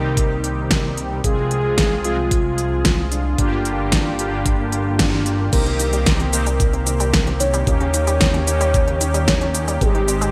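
A soft, octave-layered synth lead carries the melody from the opening, its round, dark triangle tone thickened by a sub octave, vibrato, chorus and digital delay, in this nocturnal, moody synthwave excerpt in C minor at 112 BPM in a straight 4/4. Beneath it a brassy analog pad holds sustained chords with a detuned, warbling sawtooth body and sidechain pumping, while mellow synth brass adds chorused, delayed stabs and a glossy chorused synth bass pumps along in the low register. An electronic kick with a knocking, tape-warm punch and an up-front pop kit of fat snare, crisp hi-hats, shaker and crash cymbal, bathed in gated reverb, enter at 0.2 seconds, and the whole band hits an accent at 5.0 seconds. At 5.5 seconds the harmony opens onto Cm7, Eb7 and Abmaj7 as a nasal, wave-folded analog pluck arpeggiates in the background and a barely audible FM synth bell with phaser adds a faint second line. 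A moderate, lush hall reverb and bright 1980s-style digital production round out the sound.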